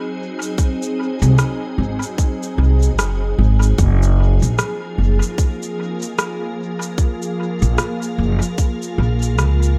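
Spacious and peaceful, this short ambient dub passage drifts at 75 BPM in 4/4 with a swung 16th-note feel, tuned slightly sharp to A4 = 441 Hz. A soft, organ-like pad holds a single Gbmaj9 chord from the opening, its pure, full-bodied tone shaped by a slow attack and long release and thickened by ensemble chorus and its own reverb. Electronic cabasa and rim click enter at 0.4 s in a small room and are trailed by dub echo. A tight electronic kick joins up front at 0.6 s. A woody, thumpy upright bass played pizzicato on gut strings arrives at 1.2 s, sitting dark and low between Gb1 and Db2 as the most prominent part. The overall mix is echo-heavy with little reverb, and the passage is cut from a longer piece.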